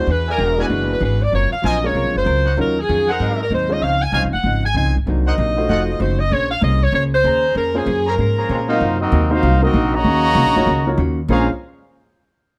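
A brisk swing at 192 BPM in 4/4 drives this sultry, dramatic big band jazz excerpt in Bb minor, anchored by a woody, thumpy upright bass on gut strings placed up front. A bright saxophone section with light vibrato carries the melody over a warm concert grand piano, whose intimate sound lets its action noise through, while a clean, compressed hollow-body electric guitar adds dark, picked accompaniment. A mellow trumpet section plays stabs alongside the saxophones, and a distant, roomy trombone section enters in the background at 8.1 seconds with a second line. At 8.5 seconds the melody passes to another trumpet section with a smooth top. The harmony moves through rich extended chords such as Gbmaj9#11 and F7b9 before returning to Bbm9 at 11.3 seconds, all captured with close, detailed microphones and light reverb.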